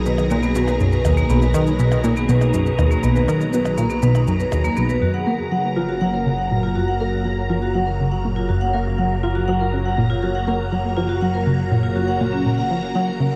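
A straight 4/4 pulse at 121 BPM drives this cosmic, luminous stretch of sequencer-driven space music, cut from a longer piece, where a punchy, funky plucky analog bass riff with tape echo and ensemble chorus sits up front while a vibraphone with medium hard mallets spins metallic, ringing arpeggios through its own tape echo. Beneath them a swirling, vintage phased string machine holds sustained chords and a mellow, evolving analog drone anchors the low end, all bathed in a huge ambient reverb for a dark, warm production. Electronic cabasa and percussion blips tick softly until 5.0 s, when the harmony moves from B to F#maj7 and a filter sweep begins on the bass.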